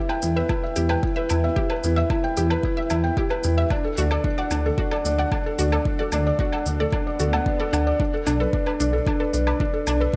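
Piano and strings electronica in E minor at 112 BPM, this hypnotic, cinematic excerpt sets a felt-muted upright piano riff up front, soft and intimate with audible action noise and a touch of delay, over a dark, detuned saw bass that rumbles and beats with sidechain pumping, moving from Em to D at 3.7 seconds and Bm7 at 8.0 seconds. A lush, punchy unison pluck plays decaying arpeggios with pumping and delay, while an overdriven, deep electronic kick drum sits up front beside a tape-warm woodblock and shaker re-recorded in a small room. A very quiet electronic swell enters at 7.1 seconds, all inside light reverb and digital ambience.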